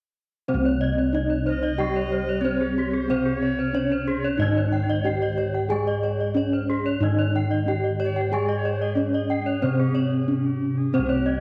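Balinese gamelan at 92 BPM in C pelog, this hypnotic, brilliant excerpt sets a mellow, dark melody on a bronze metallophone struck with padded disc mallets against round, beating bossed gongs placed up front in the bass. Around them, three horn-mallet metallophones in paired tuning shimmer with bright, airy beats: one plays a low accompaniment and two weave arpeggios, the second of which enters at 0.7 s and carries a tape echo. A distant alto recorder joins at 1.5 s with a chiffy, tongued second line and vibrato, and the whole ensemble sits in a moderate plate reverb.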